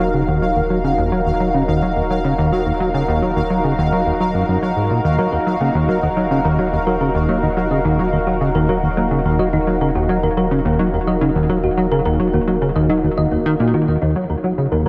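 Ambient, sequencer-driven space music at 107 BPM in Eb minor, this cosmic, hypnotic excerpt rests on a single Ebmadd9 chord. A punchy, funky analog bass riff with lush chorus and delay sits up front beside a bright, evolving resonant pad of sustained chords, while a deep sine sub bass holds underneath. A pulsing, tempo-synced gated texture hovers on a high F5 until 14.0 s, a round, tine-like thumb-piano-like synth pluck adds mellow arpeggios with chorus and delay from 5.2 s, and a huge ambient reverb with an 8.0-second tail surrounds the whole sound.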